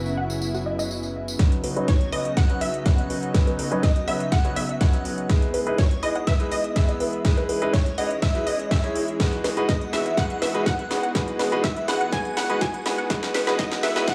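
A punchy, up-front electronic kick drum drives this hopeful, expansive progressive house excerpt at 123 BPM in B major, arriving at 1.4 seconds together with a house kit of cracking snare and metallic, tape-tinged hats. Before that, a jingly acoustic tambourine sounds briefly over the opening bars, while a full-bodied, wave-folded unison pluck carries the melody with digital delay, and a thick, detuned pad holds sustained chords with chorus and sidechain pumping. A brilliant grand piano plays short stabs through a low-pass filter and pumps with the pad, and a tight, driving sequenced synth runs arpeggios in the background, colored by chorus, phaser, cassette tape character and delay under a filter sweep. A very quiet, funky analog bass plucks in the low register, and from 1.9 seconds an airy, dreamy lead with vibrato and portamento floats a second line behind the others. The harmony moves from F#7sus4 through Badd9, Emaj7 and G#m7, as the second part builds with filter sweeps and a drum fill inside a small, moderately reverberant room.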